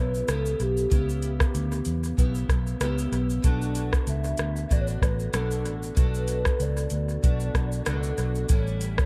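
A hollow, woody clarinet-like synth lead carries the melody through phaser, lush chorus and tape echo over picked steel-string acoustic guitar with audible finger squeak, analog chorus and vibrato, alongside a dark, round, foam-muted fingered electric bass up front and, from 0.1 s, a soft vintage rhythm box of deep kick, metallic hats, rim click and shaker with its own tape echo, in a hazy, wistful indie and bedroom pop excerpt at 95 BPM in B minor with a lightly swung 4/4 feel, its chords drifting from C#m7b5 to Bm7 and reaching A7 at 8.5 s inside an echo-heavy digital ambience.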